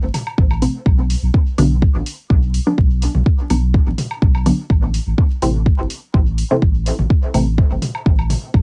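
Dub techno at 125 BPM with a light swing, hazy and hypnotic in this short excerpt, where an up-front deep kick and a round sine sub bass pumping under sidechain anchor dark cassette-worn hi-hats, small-room electronic toms and woodblock trailing dub echo, and a muted, detuned, wave-folded chord stab with phaser and echo moving from Am to Bm and back, all coated in vinyl crackle with little reverb, until a very quiet bubbling, resonant filter texture surfaces at 8.6 seconds.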